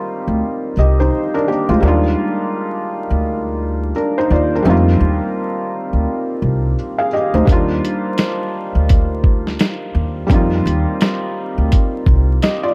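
A felt-muted upright piano opens this cosy, nostalgic lo-fi hip hop excerpt, its soft, mellow tone carrying audible action noise as it moves between F7sus4 and Ebmaj9 under a low-pass filter, with a woody pizzicato upright bass joining almost at once. At 7.5 seconds a compressed, pitched-down sampler-style drum kit arrives with a thumpy kick, medium-tuned snare and hi-hat, roughened by 12-bit grit and settling into a gentle swung groove. The intimate mix sits in a small, lightly reverberant room beneath a layer of vinyl crackle.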